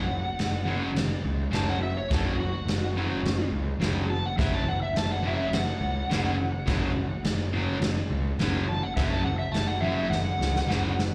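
Raw and swaggering, this garage rock cut from a longer piece struts at 105 BPM in 4/4 over an F#5 chord, heard as a live gig through the venue's PA with club reverb. A bright, overdriven slide guitar carries the solo with slapback echo, while a double-tracked fuzz guitar drives the riff and a growly, round fuzz bass with tube saturation sits up front. The raw drum kit, with a punchy kick and a rolled-off top, enters at 0.4 seconds and plays a fill from 10.1 seconds to the end at 11.1 seconds.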